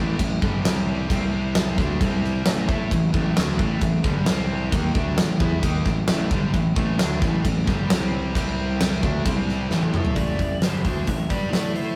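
A huge arena drum kit with a fat snare and punchy kick sits up front in this driving, heavy hard rock excerpt at 132 BPM in A minor, pounding under a scooped, high-gain distorted guitar riff alongside a very quiet, hollow-bodied overdriven semi-hollow guitar riff, while a growly fuzz bass churns through the power-chord changes, a drum fill arrives at 9.7 seconds, and a smooth overdriven lead guitar enters at 10.2 seconds over the A minor chord, all in a rough rehearsal-room sound with stone room reverb.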